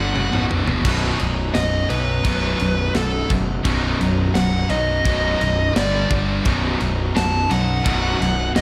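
Heavy metal with an aggressive, dark mood, taken from a longer piece, where a dark, distorted high-gain lead guitar solos up front from 0.8 seconds over a punchy, fuzz-laden picked bass and two scooped, bright high-gain rhythm guitars riffing in the background, one of them carrying a slapback echo. A tight metal drum kit with a mid-forward, rolled-off top opens with a fill at 0.2 seconds, just before a biting overdriven, double-tracked guitar joins the riffing at 0.9 seconds, also with slapback echo. The band sits in a small, lightly reverberant room, with the harmony moving from B to G5 at 5.8 seconds and back to B at 6.5 seconds.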